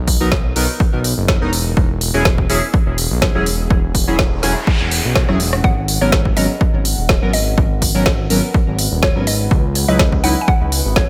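A steady 4/4 deep house groove at 124 BPM carries a light swing on the 16ths, anchored by a dry, punchy electronic kick with overdrive sitting up front. The layered kit adds smooth hi-hats, a rim click and a woody snare, while a gliding synth bass built from detuned sawtooth and square waves slides between notes with portamento, its tube saturation and sidechain pumping lending it a mellow weight in G# minor. Chorused polysynth stabs in a retro, glossy pulse-wave tone carry phaser, tape echo and their own sidechain pumping over chords moving from Bmaj7 and E69 to G#m11 and C#m11, with a very quiet, dark ambient pad with a sub octave and slow attack beneath them. A background noise sweep arrives at 4.0 s, and a short drum fill leads to 5.6 s, where a round, mallet-like FM pluck enters in the background with chorus, phaser and delay. The mood is deep and moody, set in light reverb with digital ambience, in a section cut from a longer piece.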